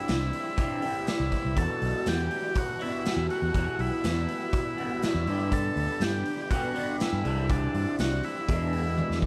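A straight 4/4 groove at 122 BPM drives this trippy, mysterious psychedelic rock clip in E minor, where a raw garage drum kit with a punchy kick, gritty saturation and a pumping stone-room sound sits up front beside a dark, round fingered bass, a twangy, slightly broken-up guitar riff through a small old amp with phaser, a buzzy vintage combo organ melody with light vibrato and slapback echo, and mellow percussive tonewheel organ chords with key click through a fast rotary speaker in the background, moving from Cadd9 through Emadd9 and G, back to Cadd9 and on to an E7 before a drum fill at 9.0 seconds.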